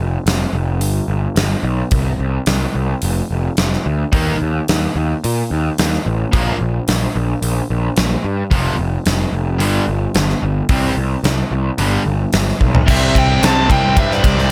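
A growly, fuzz-laden picked bass opens this powerful, anthemic hard rock excerpt at 109 BPM, joined almost at once by an up-front gated 80s drum kit with a tight kick and bright cymbals, before two background riff guitars, one cranked and overdriven and one high-gain and distorted, enter at 4.1 seconds, and a drum fill at 12.6 seconds ushers in a warm, bluesy lead guitar melody plus a very quiet, double-tracked crunchy guitar at 12.9 seconds, all in a dry space.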